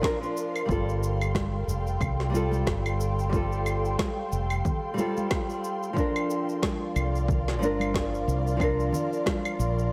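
Set in light digital ambience, this wistful sunset chillout excerpt opens with a thumb-plucked nylon-string guitar, up front and touched with tape echo, under an ethereal, airy pad that holds sustained chords with ensemble chorus and its own reverb, over a swung groove of punchy layered electronic kick, woody electronic snare, shaker and claves. A dark, round fretless electric bass enters up front at 0.7 s, and bright congas join in the background at 1.3 s. Suspended ninth chords on C and G shift slowly beneath the parts.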